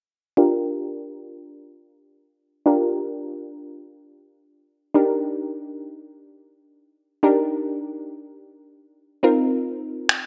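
Set in light reverb and a digital ambience, this dance-pop excerpt in free time carries a driving, confident mood. A glassy, crystalline wavetable pluck with a fast attack, a noise layer and chorus sits up front from 0.4 to 10.3 seconds, a filter sweep running across it as the harmony moves from Gm7 to Ebmaj7 to F7sus4. Layered electronic finger snaps land up front at 10.1 seconds.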